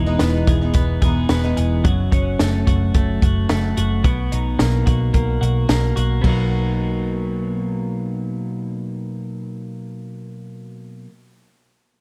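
A straight 4/4 pulse at 109 BPM drives this breezy, nostalgic jangly indie pop fragment in B major, where a bright, twangy twelve-string electric guitar plays arpeggios through analog delay to 11.1 seconds, a shimmering, octave-doubled picked twelve-string acoustic guitar briefly plays picked accompaniment until 1.9 seconds, a round, foam-muted vintage electric bass holds the low end, and a compact cocktail drum kit with a high-tuned snare, punchy kick and dark cymbals sits up front until 6.4 seconds, all moving through Emaj7, F#m and Bmaj7 in a dark, warm production with light small-room reverb.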